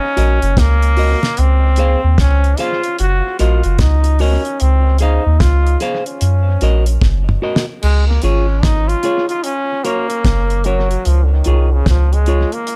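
Roots reggae in Db major at a relaxed 74 BPM, this short cut from a longer piece has an uplifting, sunny mood and a lilting swing on the sixteenths. A brilliant trombone carries the melody from the first moment, its soft attack and light vibrato giving it a vintage pop-style voice, bathed in tape echo. A dark, clean semi-hollow electric guitar supplies fingered accompaniment, also touched by tape echo, while a soft dub sub bass sits deep, round and up front beneath everything. The damped 70s drum kit is dry and acoustic, with a fat snare, tight kick, hi-hat, toms and crash cymbal sent through dub echo. The harmony sways between Gb6 and Dbmaj7 until a drum fill at 7.0 seconds leads into a trombone solo from 7.8 seconds over plainer Db and Gb chords, all set in a small room with a dark, warm production.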